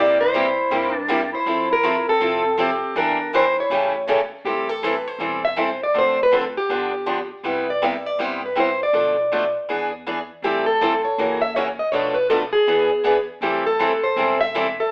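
Acoustic string swing in the jazz manouche style, fiery and swinging, cut from a longer piece, with a dark, boxy parlour guitar picking the melody up front while a clear clarinet with vibrato and a soft attack adds a second line until 4.0 s. A bright, full-bodied jumbo guitar accompanies up front, a second parlour guitar with fresh strings sits in the background and drops out between 4.2 s and 10.4 s, and a woody, thumpy upright bass on gut strings plays pizzicato in the background. The band plays live in one room, bathed in wet studio reverb yet squeezed into a telephone-like sound, moving through changes full of seventh chords that settle into A minor.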